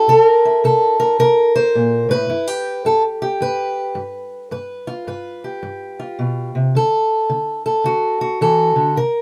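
A swung 4/4 pulse at 108 BPM, with the eighth notes pushed at 64% swing, gives this short acoustic country blues passage a loose, swaggering gait. A single fingerpicked steel-string acoustic guitar carries everything, playing alone from 0.0 to 9.2 s across a range from G2 to C5. Its tone is boxy with a parlour-guitar character, and audible finger squeaks add a gritty, handmade edge. Set in G mixolydian, the harmony moves from C7 to G7 at 2.3 seconds and reaches D at 6.7 seconds. The guitar sits up front in a moderate booth ambience with a short 0.2-second decay, and the passage is cut from a longer piece.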